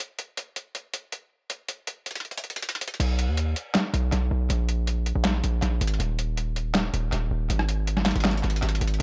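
Drenched in echo with a light touch of reverb, this brooding, hard-hitting trap excerpt moves in a half-time feel, led by a lo-fi sampler-style kit of crash cymbal, handclaps, hi-hat, rim click and a medium-tuned snare that sounds compressed, pitched down and muffled, pushed up front through overdrive and tape echo. At 3.0 s a heavy 808-style bass drops in up front, its sine tone topped with a noise layer, with a fast attack and a decaying tail that gives each note a punchy low-end thump.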